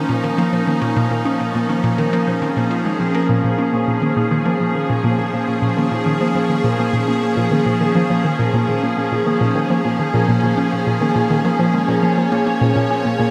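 An evolving, morphing wavetable pad sits up front with detuned, slow-blooming sustained chords thickened by ensemble chorus, anchoring this cosmic, hypnotic stretch of sequencer-driven ambient space music at 103 BPM in Bb minor, resting on a single Bbm chord. Beneath it, a hollow, bouncy square-wave pluck repeats a detuned riff with a moving notch and cassette-tape character, while a ringing, thumb-plucked Celtic harp spins filtered arpeggios through tape echo. From 0.2 seconds, an airy, breathy wind-like noise texture hovers in the background, all of it bathed in a wet spring reverb and an echo-heavy mix in this cut from a longer piece.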